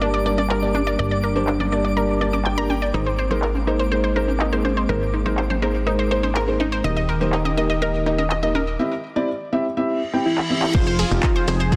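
Dreamy and bittersweet, this excerpt of progressive house moves at 123 BPM in a straight 4/4, its chords passing from Gm through Abadd9, Eb and C before landing on Fm7. A lush, warbling unison pad holds sustained chords under bright analog pluck arpeggios carrying chorus and digital delay, while a soft, felt-muted upright piano adds mellow, intimate stabs with delay of its own. A punchy, funky analog bass sits up front with the pluck, and the pad, pluck, piano and bass all pump against the sidechain. A layered pop drum kit of crash, handclaps, filtered hats and shaker ticks along beneath, joined from 0.4 s by background congas and accompanied until 8.8 s by a twinkling granular texture with a sparkling octave-up shimmer and its own reverb. A reverse cymbal and drum fill lead into the drop at 10.7 s, while from 10.3 s a thick, bold unison lead with vibrato and digital delay carries the melody. 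At the drop an overdriven, deep electronic kick hits up front over a dense, heavily limited master.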